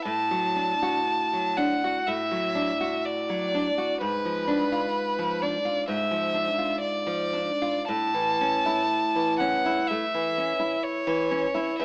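In a slow, rubato 4/4 at 61 BPM with uneven beats, this serene, lyrical romantic duo in A major pairs a single bowed violin with a fingerpicked nylon-string classical guitar, both up front and playing together throughout. The violin sings the melody with a rich, smooth, even tone and vibrato, while the guitar's accompaniment carries audible finger squeaks as the harmony moves from Dadd9/A through G#dim7 to rest on A at 7.9 s. A moderate studio reverb surrounds the pair, and the sound has a small-speaker character.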